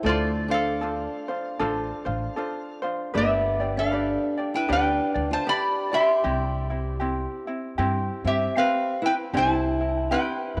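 Relaxed and sunny, this short Hawaiian excerpt, cut from a longer piece, drifts along at 78 BPM in 4/4 with a lazy swing on the eighth notes, settled in C major and tuned slightly below standard pitch. A metal-body resonator slide guitar carries the melody up front, its bright, nasal, metallic tone shaped by fingerpicks and the glide of the slide. Beneath it, a fingerpicked steel-string acoustic guitar adds a mellow second line, while a light, fingerpicked ukulele sits close in the mix with a gentle accompaniment. An upright bass played pizzicato on steel strings gives a woody, thumpy foundation, colored by tube saturation. The harmony moves from Dm7 to G to Cmaj7, the music shifting into a new section at 9.3 seconds, and a lush plate reverb with a long tail bathes the whole ensemble in a soft, glowing space.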